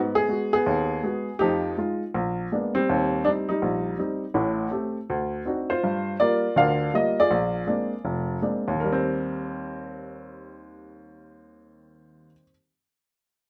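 A woody, up-front upright piano with short sustain plays solo jazz in Eb major at a relaxed, swinging 162 BPM, its chords spanning a range from F1 to F5 and moving from Abm7 through Bb7b9 and D7b9 before settling on Eb6 at 8.8 seconds, all set in light reverb in this brief excerpt from a longer piece.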